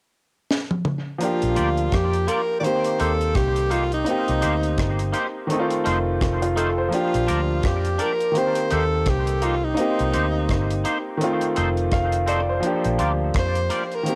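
Smooth and sweet, this short cut from a lovers rock reggae tune sits at 84 BPM in Bb major with a swung sixteenth feel, opening on a dry drum fill from 0.5 seconds with a high-tuned snare and tight kick under cassette tape grit and analog delay. At 1.2 seconds a clear, close-miked tenor saxophone takes the pop-style vibrato lead over a brilliant grand piano, both up front, while a dark, round, foam-muted fingered bass with tube saturation follows at 1.4 seconds and a clean, twangy guitar adds chorused, delayed stabs from 1.6 seconds. The chords cycle through Bb6, Eb6, Cm7 and F7 in a light-reverb home cassette sound.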